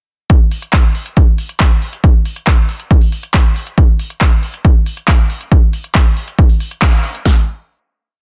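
A four-on-the-floor kick drives this short, euphoric and emotional trance piece, with an up-front big-room dance kit of punchy kick, snare and open hats joined by a quieter second kit layering crisp programmed closed and open hats with handclaps on the backbeat, both re-recorded in a small room and dry in a dense, heavily limited master, carrying a single drop to a band accent at 6.8 seconds and a final hit at 7.3 seconds.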